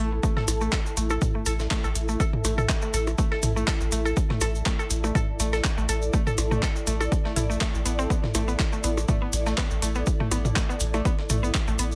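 Minimal techno at 122 BPM with a light 16th-note swing, clinical and hypnotic in mood, in a dry mix drawn from a longer piece. An up-front analog kick and a deep sine sub bass with a pitch-drop attack anchor the groove. A woody FM mallet pluck with chorus and digital delay and a cloudy, evolving granular pad both pump against the sidechain. Around them sit crisp garage claps and hats, tape-warm electronic toms and delayed percussion blips, a grainy, band-limited acoustic cabasa, and a very quiet, gritty, pitched-up breakbeat kit of hi-hat and snare.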